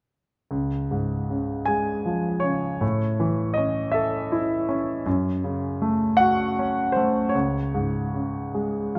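Set in 6/8 with uneven, rubato beats, this calm, peaceful classical piece for solo concert grand piano unfolds lyrically from 0.5 to 9.0 seconds, spanning a deep bass up into the treble. The piano sounds clear and worn, sitting up front and present in a moderate recital-hall reverb, as its harmonies drift through a few unhurried changes. A brief piano fill at 8.5 seconds closes this fragment of a longer work.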